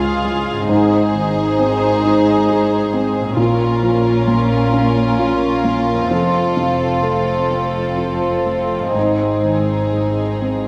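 Cinematic, emotional film score for orchestra in a rubato 3/4 at 61-68 BPM, moving and longing, where a floating, sul tasto violin section carries the melody over a clear second violin line, a dark, mellow baby grand piano with audible action noise, an intimate viola section, very quiet ringing harp arpeggios, and a background cello section joined by a woody double bass section on the bass, all set in a moderate scoring-stage reverb as the harmony moves from Db through Bbm and F to Ab across this 10.7-second cut from a longer piece.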